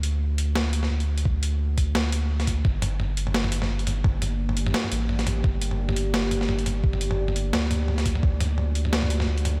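Heavy and spacious, this short cut from a longer half-time drum and bass track sits in a light reverb, its sampler-style drums carrying the gritty, compressed character of having been re-recorded in a large room. At 172 BPM in 4/4, with a half-time feel and a gentle swing on the 16ths, the boom bap kit sits up front with hi-hat, a high-tuned snare and toms. A thumpy electronic kick joins at 1.3 seconds, while a saturated sub bass holds down the low end throughout with a thick, triangle tone, fast attack and tube saturation. At 3.9 seconds a deep, moody ambient pad enters quietly beneath, its sawtooth and sine unison layers with a sub octave giving sustained chords a warbling, vintage quality, with chorus, built-in reverb, 12-bit sampler grit and sidechain pumping. The harmony in G harmonic minor rests on Gm before moving to D at 8.2 seconds, in a tuning slightly below standard pitch.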